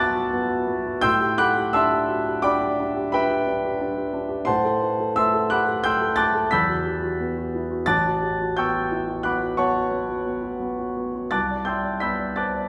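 Bathed in the wet reverb of a recital hall, this nocturnal, mysterious fragment of impressionist classical solo piano moves at 88 BPM in an uneven, rubato 5/4, its up-front concert grand spanning deep bass to high treble with long sustain as lush extended chords drift from an opening A69 through Gmaj9/A and Emadd9 to a closing Cmaj9 at 11.3 seconds.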